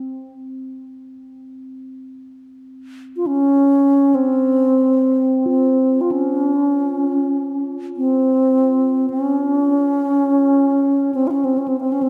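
Drenched in a wet plate reverb with a long tail, this echo-heavy world meditation fragment feels spacious and unhurried. A bronze singing bowl, played with a felt mallet, rings alone from the start, very quiet and dark, with a slow metallic beating. At 3.2 seconds a close-miked bass flute enters up front, its pure, straight tone bright and reedy, carrying the melody through an analog delay until the close at 12.1 seconds.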